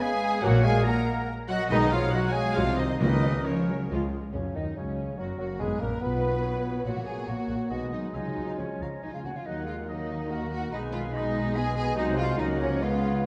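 Urgent and restless, this dramatic, fast romantic orchestral passage in triple time, taken from a longer piece, moves with a flexible rubato feel, its rich, expressive violin section carrying the melody over second lines from a pure metal flute, a distant oboe, a very quiet clarinet and a lush, soft-attack second violin section. Mellow French horns and a very quiet trombone section hold sustained chords, mellow trumpet stabs sound until 3.9 s, and timpani on medium mallets enter at 3.0 s, while a clear, intense viola section, a dark, woody cello section and a smooth, even double bass section fill out the harmony and bass. A vintage-toned bassoon joins at 4.3 s, and the whole sits in a wet concert hall reverb with a dark production.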